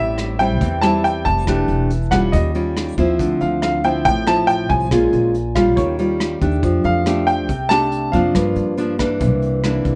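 Romantic and sunny, this bossa nova excerpt sets an intimate baby grand piano melody, its action noise audible and notes short-lived, over up-front fingerpicked nylon-string guitar with fresh strings and finger squeak, woody pizzicato upright bass, and a muffled, gritty brush kit with a punchy kick, hi-hat and rim click entering at 0.2 s, heard in a dry sound until the piano drops out at 9.2 s.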